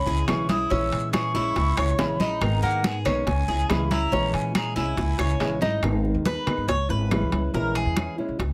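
A straight four-beat Cuban son and guajira groove, nostalgic yet danceable and cut from a longer piece, is driven by damped, thin-skinned congas, round low-tuned bongos struck with hard hands, ringing metal-shell timbales, background claves and a raspy, saturated guiro, over a growly, thumpy pizzicato upright bass that sits up front. A breathy, hollow concert flute with vibrato and a crisp attack carries the melody until 5.6 s, while a bright, metallic Cuban tres picks arpeggios on its double strings and a small thumb-plucked nylon-string guitar, complete with finger squeak, fills in the harmony. After a drum fill at 5.2 s, the tres takes a solo from 5.8 s, all captured with close, detailed microphones and light reverb.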